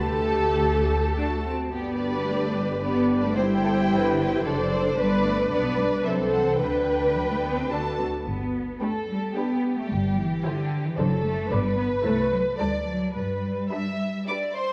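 Graceful and lively, this short passage from a quick classical-period movement for string orchestra moves in 3/4 at 103-115 BPM in G major, with a rubato feel. A lush, up-front violin section carries the melody over a second violin line with a soft attack, while close, expressive violas supply the accompaniment with portamento, and woody cellos join dark double basses on the bass until the basses stop at 13.6 s. The strings sit in a wet concert hall reverb and a worn, warbling old-tape sound with pitch drift.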